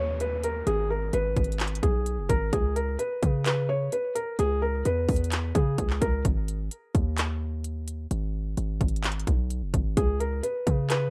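Trap-flavored hip hop in G# minor at 129 BPM with a half-time feel, this short cut from a longer piece sounds eerie and hard-hitting. A felt-muted upright piano carries the melody between G#4 and C#5, its mellow, intimate tone touched with delay and audible action noise, playing until 6.2 seconds and returning at 10.0 seconds. Underneath, a punchy 808-style bass with a sine body, a noise layer and a fast attack that decays runs throughout, while a trap drum kit of hard-clipped kick, crisp hi-hats and handclaps enters at 0.2 seconds with a tape-tinged, electronic edge. A very quiet downlifter sweeps through the opening moments, and the harmony moves from G#m through C#5 and G#5 power chords. The drums, bass and piano sit up front in a dry, rough home-demo mix.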